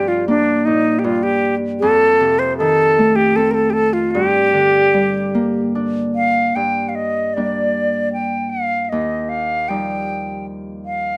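Celtic folk slow air in G minor, mournful and longing, moving at a rubato 78 BPM in 3/4, where an airy, bright wooden flute sings the tongued, straight-toned melody up front over a fingerpicked Celtic harp whose ringing chords pass from Gm7 through F7 and Gm to Ebadd9, all captured by close, detailed microphones with light reverb in this brief fragment of a longer piece.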